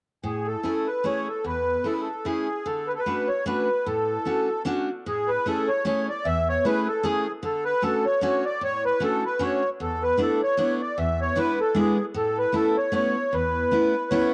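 Musette waltz in a lightly swung 3/4, charming and nostalgic, cut from a longer piece. A reedy, sweet, dark accordion with light tremolo tuning carries the melody up front, while a full-bodied picked jumbo steel-string acoustic guitar accompanies beneath it from 0.2 to 14.3 seconds, moving through major-seventh harmonies before a suspended dominant resolves at 12.2 seconds. Both instruments have a cassette-tape character, and the home recording sits in a wet spring reverb with a rolled-off top end.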